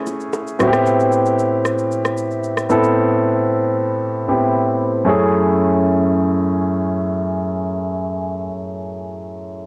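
Amapiano at 114 BPM in F# minor, this short excerpt has a soulful, late-night mood and a straight 4/4 feel. A concert grand piano carries the accompaniment throughout, sitting up front with deep bass, long sustain, audible action noise and an intimate, polished tone, all softened by a low-pass filter and a cassette-tape character. Its chords move from a rootless F#m9 to Am9 and back to F#m9 at 5.1 seconds, with a filter sweep shaping the piano through the opening stretch. At the very start a barely audible electronic downlifter passes by, while bongos and congas, played with soft hands in a small acoustic room, sit briefly in the background. A produced electronic shaker and rim click run until 3.0 seconds, leaving the piano alone in a dry, home-recorded cassette sound.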